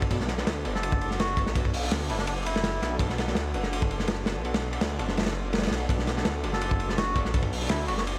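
A dark, raw drum and bass fragment cut from a longer piece opens on a crunchy, gritty breakbeat kit with a tight kick and rolled-off cymbals sitting up front in a small room, while a very quiet, silky string machine holds a sustained Bm7 chord beneath faint, punchy orchestra-hit-like synth stabs. A thick, menacing detuned saw bass with tube saturation joins almost at once, its tone beating beneath the drums. From 0.7 s a reedy, breathy melodica carries the melody through a dub echo, dropping out and returning at 6.5 s.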